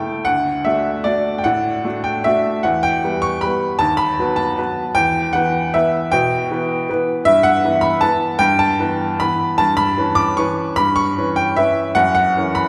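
Wistful and elegant, this classical piano waltz moves in 3/4 at roughly 145-164 BPM, with a free, rubato feel that lets the pulse breathe. A single upright piano plays alone from start to finish, spanning D2 to D6 with a clear, woody tone and the intimate sound of its action audible beneath the notes. The instrument sits up front and present in the mix, its polished voice carrying long sustain. The harmony opens on D and turns toward E minor with a B7 passing through, then darkens with a half-diminished chord before arriving on F#7 at 12.0 seconds. A wet church reverb with a 3.5-second decay surrounds the piano, giving the sense of a large hall or sanctuary. The 12.7-second recording is cut from a longer piece, ending on that F#7.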